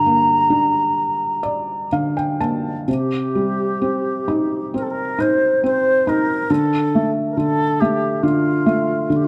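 A wooden baroque flute carries the melody up front, its airy, tongued tone shaded with vibrato and an expressive, slightly distant quality, in a mournful, longing Celtic slow air that moves in rubato 4/4 at around 60-71 BPM. A soft, felt-muted upright piano accompanies just as close, mellow and intimate with short sustain and audible action noise, adding a fill from 1.0 to 2.9 seconds over G minor before the harmony moves to C minor at 2.9 seconds, then to D minor at 6.5 seconds. A moderate spring reverb lends a sense of space to this short passage, cut from a longer piece.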